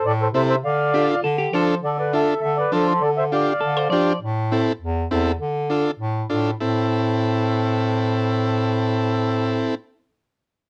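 Dry, close 1970s-style studio sound frames this passionate, danceable Latin excerpt at 202 BPM in A minor, where a reedy, mellow accordion carries the melody until 3.9 seconds over a clear, roomy bass clarinet line, a buzzy vintage combo organ with light vibrato supplies the accompaniment, and a twangy, picked electric guitar adds a second line until 4.2 seconds as the harmony moves between Am and Dm.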